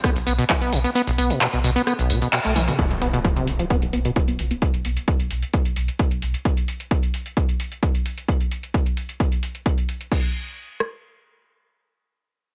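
A squelchy, resonant sawtooth acid bass riff leads this driving, hypnotic slice of peak-time techno, pumping against the beat with tape echo and a filter sweep from 2.8 to 4.6 seconds before it stops. Up front, a layered electronic drum kit with a punchy kick and rim click runs through, while the kick drops out from 1.0 to 2.8 seconds, and a second layer of metallic hats, handclaps, tambourine, toms and crash cymbal pumps along, with a drum fill and band accent ahead of a background impact. Underneath, a round, mellow sine sub bass holds a deep, overdriven low note through a low-pass filter, all set in light reverb.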